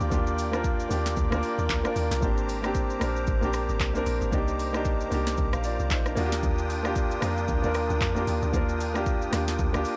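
Amapiano at 114 BPM in 4/4, with a swung sixteenth-note feel that gives this late-night excerpt a deep, unhurried sway. A concert grand piano sits up front with a polished, present tone and a full low end, carrying the accompaniment through a progression of Ebmaj9, Abmaj9#11 and Cm9 before returning to Ebmaj9 at 6.2 seconds. Beneath it, a round, dark log drum bass hits with a fast attack and decaying body, an FM tone with a noise layer, and it stops at 9.8 seconds. The electronic drum kit is also prominent, combining a deep kick, sharp snare, metallic hi-hats, rim clicks, handclaps and shaker with a tape-softened edge. Further back, a reedy musette accordion holds sustained chords in its shimmering, wet tuning, and its level pumps with sidechain compression. The whole mix has a dry, gritty hardware character with transformer saturation and a digital ambience.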